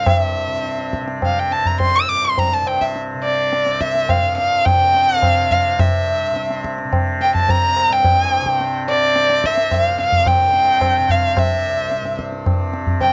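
Radiant and serene, this short passage of Hindustani classical music cut from a longer piece moves in a straight five-beat metre within raga khamaj, gradually speeding up over its 13.1 seconds. A single bowed violin carries the melody up front, its boxy, expressive tone colored by vibrato and portamento as it sings between D5 and E6. Beneath it, a tanpura sustains a softly plucked, buzzing drone whose shimmering acoustic glow sits low in the mix from C2 to C3. The tabla joins at 0.1 seconds, its low-tuned drums giving a close, short-ringing pulse a little behind the violin in level. The sound is dry and intimate, with little reverb, like a close 1970s studio session, and the music passes from its opening section into a second one at 5.8 seconds.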